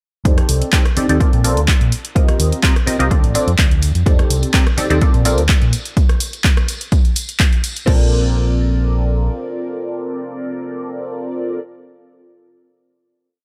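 A feel-good, joyful slice of filtered disco house at 126 BPM in Bb major, set in a straight 4/4 groove that runs from 0.3 to 7.9 seconds under a sweeping filter before settling on a held Bbmaj9 chord. Up front, a punchy, overdriven electronic kick drives a four-on-the-floor pulse, joined by an analog drum machine whose programmed closed and half-open hats, rim clicks, handclaps and crash carry a gritty, roomy bite, with sidechain pumping on the hats and cymbals. Tucked in the background, a close, dry tambourine adds disco percussion with its own pumping and low-pass filtering. An amped, round electric bass, fingered and tube-saturated, plays a funky syncopated line with sidechain pumping and low-pass filtering before dropping out at 9.3 seconds. A detuned sawtooth polysynth with a sub octave and a mellow chorused, phased sheen comps a rhythmic riff of rootless voicings through F13, Bbmaj9, Eb6 and Dm7, then holds the final chord, ringing on by itself once the bass drops out, to the close at 11.6 seconds. 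The mix is dry, with little reverb, and the polysynth also pumps beneath its low-pass filter.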